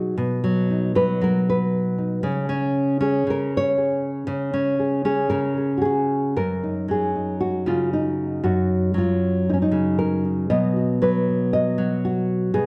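Set in a straight 4/4 at 117 BPM, this peaceful, pastoral folk piece is a short cut from a longer work, played on a solo nylon-string guitar in F# major. The classical, thumb-plucked guitar sits up front with a dark tone, ranging from F#2 to D#5 and moving through B, C#5, F#6 and back to B, with a new passage beginning at 6.4 seconds. A moderate recital hall reverb and a dark, warm production give the recording a gentle sense of space.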